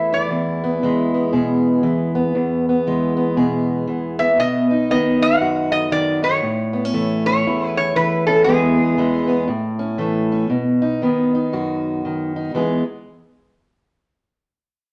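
Acoustic country blues for two guitars, rollicking and soulful, moving at 118 BPM in 4/4 with a swung eighth-note feel in E major. A fingerpicked steel-string parlour guitar carries the accompaniment up front from the start to 12.8 seconds, its tone dark and boxy in the low and middle range. Above it, a metal-body resonator slide guitar plays the melody with fingerpicks, sounding bright, metallic and nasal; it is heard briefly at the opening, then returns from 4.2 to 9.4 seconds. The chords move from E through B and A and back to E. A moderate large-studio reverb gives the pair some space, and the sound is cut from a longer piece.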